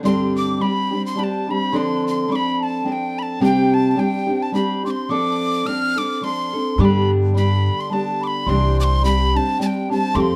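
A dark studio sound with moderate reverb frames this rollicking, lively excerpt of Celtic folk in G mixolydian, moving at 107 BPM in a lilting 3/4 with a light swing. Up front, a fingerpicked steel-string acoustic guitar carries the accompaniment with audible finger squeaks, while a breathy metal tin whistle takes the melody with tongued chiff, vibrato and an unsteady delivery. A very quiet, bell-like celesta traces a delicate second line in the same high register, and a woody, thumpy pizzicato upright bass on gut strings joins at 6.8 s.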